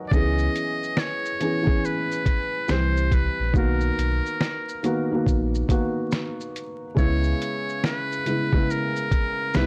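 A trumpet with a metal mute carries the melody in this hazy, melancholic lo-fi hip hop fragment, cut from a longer piece. Its tone is buzzy and thin with a light vibrato, close-miked and jazz-styled, sitting up front with a low-pass filter and analog delay. Around it, a felt-muted upright piano gives soft, dark accompaniment, its thick felt and audible action noise lending an intimate feel. A deep sub bass with an octave, rounded like a sine or triangle and given transformer saturation, holds the low end alongside a sampler-style drum kit. That kit is pitched down and compressed, with a thumpy kick, fat snare, hi-hat, shaker and finger snaps swinging on the sixteenths. The harmony moves from C#m7 through Cmaj7 and Bmaj7 before returning to C#m7 at 7.0 seconds, all wrapped in a dry, gritty hardware sound with vinyl crackle and digital ambience.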